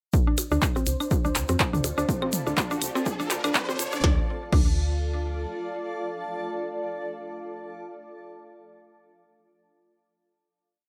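A punchy four-on-the-floor kick, a grainy hand-played egg shaker and a very quiet pulsing gated texture holding a high note open this short, hypnotic and quirky minimal techno piece. They are soon joined by a chorused, tape-coloured mallet-like synth pluck looping a 6-step sequence that drifts against the bar, a clicky minimal drum kit with tiny snare, handclaps, hi-hats and crash, overdriven background blips, claves and toms in cross rhythm, and a woody, round FM bass rolling staccato under sidechain pumping. A dark, cloudy granular pad of slowly shifting chords drifts in at 1.6 s, and an electronic riser lifts the filter-swept build from 2.2 s to 4.0 s, where it gives way to a final chord carried by the pad, which lingers alone until 8.7 s.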